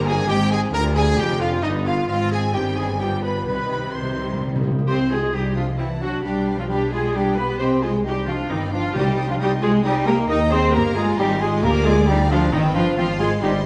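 A quick classical-period movement for symphony orchestra in C minor, this 3/4 passage at 133 BPM feels dramatic and urgent, cut from a longer piece. A focused chamber violin section carries the melody high in its range, while a clear solo clarinet, a second violin section in the background and a pure, hollow concert flute add second lines, joined briefly by a very quiet cor anglais. Underneath, a distant, even viola section supplies accompaniment, a mellow French horn section holds tight sustained chords, and clear, close-miked trumpet stabs sound through the opening until 4.4 seconds. Cello and double bass sections anchor the bass, the double basses sitting expressive and up front, while timpani struck with hard mallets play a fill from 3.5 seconds and return briefly near 9.0 seconds. The harmony turns restlessly through minor-key progressions with dominant and diminished colour, and the whole ensemble sits in the wet reverb of a recital hall.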